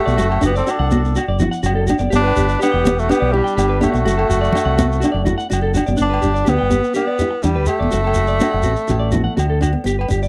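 A breathy tenor saxophone with clear vibrato carries the melody up front in this sunny highlife guitar band piece, moving at 124 BPM in G major over a round, punchy fingered electric bass. A vintage, jazz-style trumpet with scooped notes plays a second line in the background until 5.5 s, while a twangy, slightly broken-up electric guitar picks arpeggios and a bright, fingerpicked nylon-string guitar, finger squeaks audible, adds accompaniment behind it. Hard-handed, high-tuned congas and ringing agogo bells sit in the background beside a grainy, compressed shekere, all captured in a dry, close 1970s-style studio sound with light reverb.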